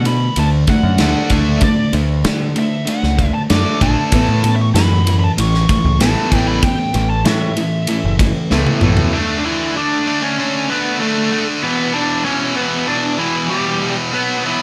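A straight 4/4 pulse at 96 BPM drives this angsty, brooding piece of quiet-loud alternative rock, cut from a longer song. A big acoustic drum kit sits up front with a tight kick, a medium-tuned snare, ride cymbal and toms, its sound mid-forward with a rolled-off top, and it plays a fill from 8.5 to 9.1 seconds. Beneath it a growling picked electric bass, overdriven and direct, rumbles through the opening stretch alongside a bright, distorted electric guitar riff and a lo-fi garage guitar riffing in the background. A boxy fingerpicked acoustic archtop adds arpeggios under plate reverb while a biting, overdriven lead guitar solos over chords moving from D to Asus2. At 9.1 seconds the archtop, garage guitar, bass and drums drop away, leaving the distorted riff and the lead guitar carrying the melody over D5 and Em in a light reverb.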